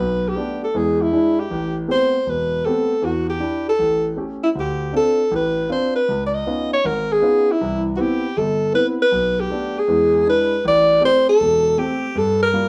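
Playful, relaxed swing jazz at 158 BPM in 4/4, this short cut from a longer piece features an up-front alto saxophone soloist whose warm subtone and vibrato carry the melody over a natural-sounding grand piano, both playing throughout. The piano comps through a lilting progression that opens on Bm7 to E7 and moves through Am9, Dm7 and Db9 before settling toward a new passage at 10.6 seconds. The band was recorded live in one room with a wet studio reverb and a soft, mellow top end.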